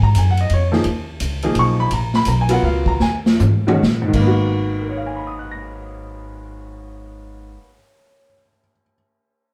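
A swung 3/4 pulse between 120 and 171 BPM slows into a drum fill as this intense, searching modal jazz fragment in G# dorian moves from D#m7 toward G#m9, with a punchy, roomy big-band kit until 4.2 seconds, a growly pizzicato upright bass until 7.6 seconds, and a brilliant, woody upright piano comping up front until 8.9 seconds, all set back in a wet studio reverb.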